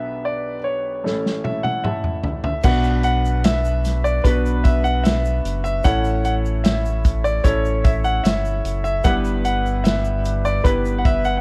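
An up-front acoustic drum kit with a punchy kick enters at 1.1 s with a fill in this emotional, longing pop ballad, cut from a longer piece. A brilliant concert grand carries the melody over an intimate second grand whose action noise is audible, and the piano adds a fill of its own before a deep sine sub bass and a grainy shaker in the background arrive at 2.6 s. The small room and worn cassette tape give the whole a warbling pitch drift as the chords move from G/B and A into B minor.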